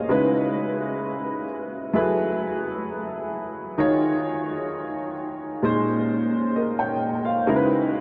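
A warm baby grand piano plays alone from 0.0 to 8.0 s in this late-night, sensual R&B fragment in Eb minor at a slow 65 BPM, its natural, up-front tone touched by analog chorus and tape echo as it moves through lush minor eleventh chords (Dbm11, Gbm11, Ebm11, Bbm11 and back to Dbm11) within a dreamy mix soaked in a huge ambient reverb.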